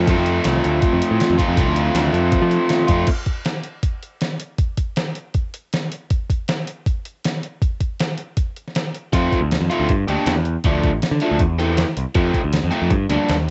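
Upbeat, jangly indie rock at 159 BPM in F major, this cut from a longer piece opens with an overdriven electric guitar riff, bright and double-tracked, alongside a growling picked bass that is overdriven and up front. The gated 80s drum machine carries thumpy kick, a snare drenched in gated reverb, hi-hat and crash, all with an overdriven, sampler-style bite. Around the 3-second mark the bass and then the guitar drop out, and the drums play alone. Guitar and bass return at 9.1 seconds over a chord cycle of F, Gm, Dm and Am/E. The whole recording has the dull, capped top end of a home cassette recording, set in a digital ambience.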